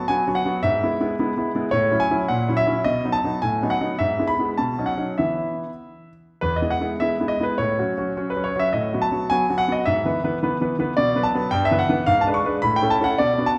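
A classical-period piano sonatina in E major, this short passage cut from a longer piece carries a graceful, elegant mood at a moderate 96-110 BPM in 2/4, shaped with a flexible rubato. A solo concert grand piano plays throughout, its tone clear and smooth with a deep bass and a vintage character, sitting up front in the sound. The instrument spans from E2 up to C#6, and the harmony moves through sweetly classical progressions, touching on F#7 and B7 before settling on E, then later darkening briefly with B minor, E minor and a G# diminished chord before arriving on A. The music presents its opening phrase twice, the second statement beginning at 6.4 seconds. A recital-hall reverb with a 1.5-second decay surrounds the piano, giving it the resonant, spacious air of a church or concert hall.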